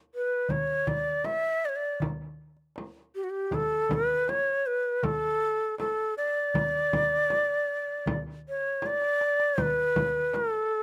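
This Arabic maqam ensemble piece moves at a stately 79 BPM in a straight 4/4, tuned a little below standard pitch to A4 = 436 Hz, and carries a warm, dignified mood. A breathy, reedy ney carries the melody up front, its bright end-blown tone shaped by vibrato and tongued notes as it moves between F#4 and E5. Beneath it, from 0.5 s, a darbuka with a clay shell and natural skin adds small, high strokes played with soft hands, heard close and dry. A deep, large frame drum, set in a small room, enters at the same moment alongside the darbuka, and both drums sit well behind the ney. A drum fill starting at 8.8 s leads into a new section at 9.6 s. The sound is open and intimate, with little reverb, in what is cut from a longer performance.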